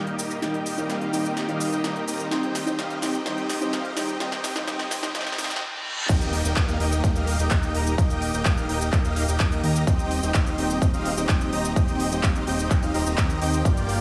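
Lightly reverberant with a digital sheen, this uplifting, euphoric festival progressive house excerpt at 127 BPM in Eb major opens with a build-up in which a dark, boxy grand piano with audible action noise and a lush, slow-attack supersaw pad play until about 5.5 seconds over a huge, detuned, pumping supersaw riff under a filter sweep, a fat analog bass, a big-room dance drum kit with crisp hats and a punchy snare, and a very quiet riser, reverse cymbal and downlifter, before the drop at 6.1 seconds brings in a punchy, up-front electronic kick.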